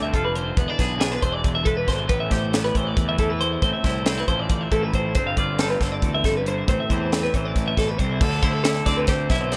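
A bright, compressed twelve-string electric guitar plays up-front arpeggios with spring reverb and tape echo in this restless, intricate math rock and midwest emo excerpt in 7/8, backed by a clean, fingered twangy electric guitar, a fuzz-overdriven picked bass and a crisp, airy fusion kit with a high-tuned snare and punchy kick, all in a close, polished mix that moves through chords such as G7sus4, Am9 and Fmaj7/A before a new section on D9sus4 at 8.2 seconds.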